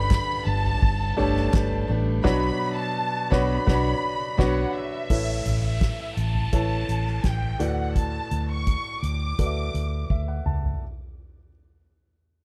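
A straight 4/4 pulse at 84 BPM carries this uplifting piano-driven pop excerpt in D major, where a polished baby grand piano accompanies a lush, distant violin section singing the melody with vibrato and portamento, a full-bodied fingerpicked steel-string acoustic guitar riff stops at 4.6 seconds, a round, foam-muted electric bass sits up front beside a soft-mallet drum kit with a fat snare and punchy kick, crisp group handclaps sound only briefly at the start, and an electronic downlifter enters at 5.1 seconds before piano and drum fills close the passage, all in a dry, close 1970s-style studio sound.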